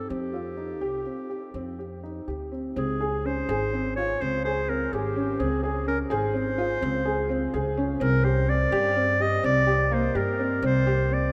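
Set in a straight 11/8 at 252 eighth-note beats per minute, this hopeful, shimmering contemporary chamber piece, cut from a longer work, has a mellow, smooth-topped clarinet carrying a classical-style solo melody over arpeggios from a dark, worn, boxy baby grand piano whose action noise is audible. A woody, thumpy pizzicato upright bass on gut strings anchors the low end, with all three parts up front and playing throughout the 11.3 seconds. A vast, echoing cathedral reverb bathes the sound as the harmony moves from Fsus2 into a second section at 2.8 seconds.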